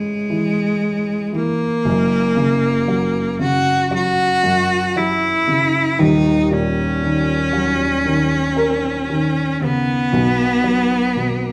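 A rich, bowed cello and a felt-muted upright piano begin together, both playing up front throughout this short pop excerpt at a slow 58 BPM in a straight 4/4. The single cello carries the melody between G#3 and F#4, its tone focused and smooth on top, with a singing vibrato. Beneath it, the piano accompanies across a broad span from D#1 to A#4, its sound soft, mellow and intimate, with short sustain and the natural clatter of its action audible. The harmony moves from Amaj7 to F# at 1.9 seconds, then to D#m7 at 6.0 seconds before settling on B5 at 10.1 seconds. The players sound live together in a stone room whose wet reverb lends an emotional, hopeful glow to the moment.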